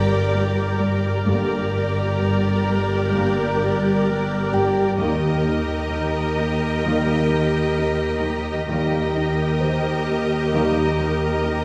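A delicate, slightly out-of-tune music box tinkles in the background of this tense, mysterious suspense film cue at 65 BPM, as a faint electronic impact opens the passage and the harmony moves from G minor to E-flat. Bowed string sections carry the weight: violins sing a smooth, vibrato melody over a second violin line, with an expressive viola accompaniment marked by portamento, a dark, woody cello riff, and lush cellos and double basses anchoring the low end. A hushed, dark high violin texture and a bright, bubbling sawtooth pad with chorus and its own reverb shimmer behind everything, while mellow French horns and warm trombones hold very quiet chords from 1.3 to 10.9 seconds, all set back in a reverberant concert hall.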